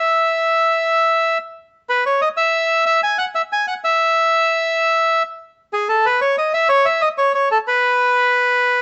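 Playful and nostalgic, this brief tango fragment from a longer piece features a solo bandoneon with a reedy, full, close-miked tone, placed up front in a softly reverberant, dark-edged room, playing with a free rubato feel in 4/4 as its opening phrase gives way to a new section at 1.9 seconds.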